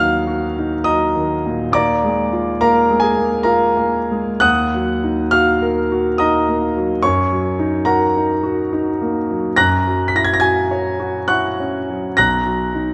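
Romantic classical nocturne for solo concert grand piano in E-flat minor, moving in a wistful, yearning 3/4 at 69 BPM with uneven, rubato beats. The piano sits up front and intimate, spanning B1 to Cb7 with deep bass, a smooth, vintage tone and audible action noise, all set in a moderate scoring-stage reverb. In this fragment of a longer piece, the harmony drifts from Ebm through Bb7/Eb and Gb7 before arriving on B at 12.2 seconds.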